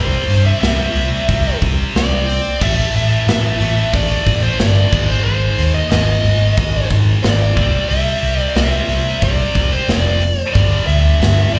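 Heard as a live club gig through the venue's PA, this anthemic, energetic hard rock excerpt moves at 91 BPM in a straight 4/4. A double-tracked, bright high-gain rhythm guitar drives a heavy riff over C, A5, Ab5 and G5 with slapback echo, while a growly, overdriven picked bass sits up front and a darker distorted lead guitar carries the melody, also with slapback echo. A big acoustic rock kit joins at 0.3 seconds with a punchy kick, a medium-tuned snare, hi-hat and bright crash cymbals.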